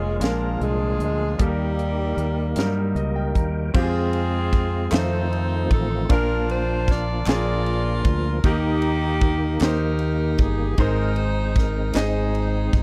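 A crisp fusion drum kit sits up front in this short slice of slow, uplifting gospel in 6/8, its high-tuned snare and punchy kick framed by crash, ride and hi-hat from 0.2 seconds onward. A breathy, whispered tenor saxophone opens the melody with intimate vibrato before dropping away at 3.0 seconds, while a tight, clear saxophone section carries the tune throughout with light vibrato. A brilliant concert grand piano with deep bass accompanies, and a fat, lightly overdriven tonewheel organ holds sustained chords in the background through a slow rotary speaker and chorus vibrato, its key click and percussion audible. Piano and organ both add fills just before the second section begins at 3.7 seconds, as the harmony moves from Fm through F7 and Bb to Eb and Ab. A punchy fingered electric bass anchors the low end up front, and group handclaps join quietly in the background from 4.9 seconds, all captured in a dry, close 1970s-style studio sound with little reverb.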